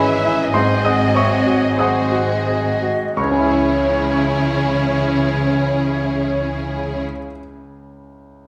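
In a rubato 4/4 at 42-52 BPM that slows through the first 3.2 seconds, this passionate, brooding romantic passage for piano and orchestra in C# minor moves from C#m/G# to G#7 and settles on C#m at 3.2 seconds. A brilliant, intimate grand piano sits up front with audible action noise, carrying the melody alongside a smooth, lush violin section. Meanwhile an airy silver flute and a focused second violin section share a second line, while a close viola section with portamento, very quiet dark horns, expressive cellos and woody double basses fill out the harmony. The orchestra stops at 7.0 seconds, leaving the piano alone until 8.5 seconds within the wet reverb of a scoring stage.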